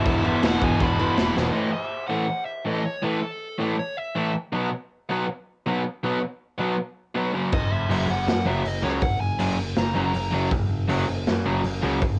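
Punk rock at 160 BPM in 4/4, upbeat and rowdy, cut from a longer piece and captured as a home cassette recording in a small room, with a crunchy, up-front overdriven guitar and a tight, distorted one driving riffs from 0.0 to 12.0 seconds while a dark, smooth lead guitar sings the melody in two phrases. A growly, direct picked bass and a raw garage kit with a punchy kick, dark cymbals and a gritty, saturated, pumping room sound hit briefly at the start, break off after a drum fill at 1.4 seconds, and return at 7.5 seconds. From 1.5 seconds the feel drops into half time over power chords moving through A5, B5 and F#5.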